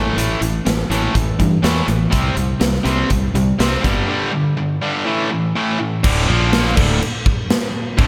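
Hard rock at 123 BPM in a straight 4/4, driving and aggressive, cut from a longer piece. A double-tracked, overdriven electric guitar plays the up-front riff from the first moment, its picked tone bright and given a slapback echo. A growly, punchy fingered bass sits beside it with a direct, modern sound, and a big acoustic rock kit joins at 0.2 seconds with a punchy kick, a medium-tuned snare, hi-hat and bright crash cymbals, also placed up front. The riff moves through A5, C5 and G5 before a break at 4.1 seconds, then shifts at 6.0 seconds to a new section built on D5 and Bb5. A lush hall reverb and a touch of small room ambience give the whole band a big arena sound.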